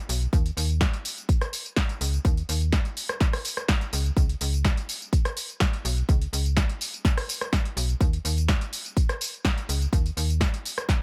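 A snappy, metallic FM bass with a fast, decaying attack and a pumping sidechain opens this sensual, nostalgic filtered disco house fragment alongside an analog drum machine of hi-hat, rim click, tambourine and a punchy, small-room snare, whose hats and percussion also pump, before a layered electronic kick arrives at 0.3 seconds, all of it placed up front in a dry mix with little reverb.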